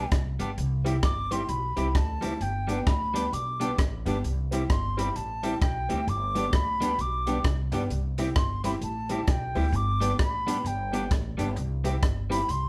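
An airy, crisp-attacked baroque flute solos up front through this cheerful, bouncy swung ska excerpt, over a growly pizzicato upright bass, a dry cocktail drum kit with punchy kick, hi-hat and rim click, and a picked, compressed electric guitar at the edge of break-up, while a detuned, jangly honky-tonk upright piano adds stabs in the background from 0.8 s, the band captured playing live together in one room with a wet studio reverb.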